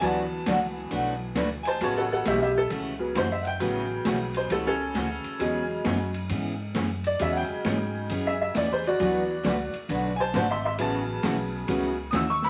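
Moderate studio reverb and a layer of vinyl crackle give this cheerful, playful western swing excerpt an old-record feel, moving at 134 BPM in 4/4 with a swung eighth-note lilt in A major over D6, A6 and E6 chords. A brilliant, worn and slightly detuned upright piano sits up front and takes a solo for the full 12.5 seconds, while a full-bodied picked steel-string acoustic guitar plays along until 12.2 seconds. Underneath, a woody, growly pizzicato upright bass and a vintage drum kit with dark cymbals on hi-hat, ride and snare keep the swing moving.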